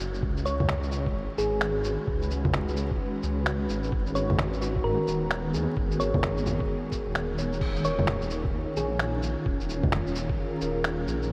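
This future garage excerpt rides a swung 4/4 groove at 130 BPM in Eb minor, built on a muffled, thumpy, pitched-down electronic kick that enters at 0.2 seconds and a lo-fi sampler-style kit of bongos, finger snaps, shaker and crash cymbal, both compressed, tape-warm and re-recorded in a small room, with the kit sitting up front. Beneath them a menacing, detuned saw bass with tube saturation and a filter swell evolves through the low register, pumping against the kick. From 0.8 seconds a blurred, cloudy granular pad holds sustained chords with slow attack, long release and subtle chorus, moving from Db9sus4 to Abm7 to Ebsus2. A round, tine-like FM pluck carries a gentle melody through chorus and tape echo, while a clean tine electric piano, heard as if through built-in speakers, sits in the background, trailed by a diffuse ambient delay. The whole mix is dreamy, soaked in a huge ambient reverb and dusted with vinyl crackle, giving it a rainy, ghostly mood.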